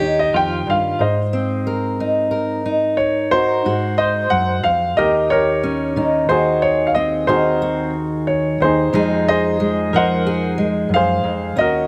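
Heartbroken and melancholic, this short slice of an acoustic folk-pop ballad moves at 91 BPM in a straight 4/4, with a clear, up-front concert grand piano carrying the melody over deep bass and short sustain while a dark, woody fingerpicked steel-string guitar with old strings supplies the accompaniment. A slightly broken-up, lo-fi electric guitar through a small old amp adds soft, compressed tremolo arpeggios in the background, first from 0.3 to 4.7 seconds and again briefly near 9.9 seconds. Light reverb and close, detailed miking keep the sound intimate as the chords drift from Eb through Ab7 and Eb7 toward a closing Fm7.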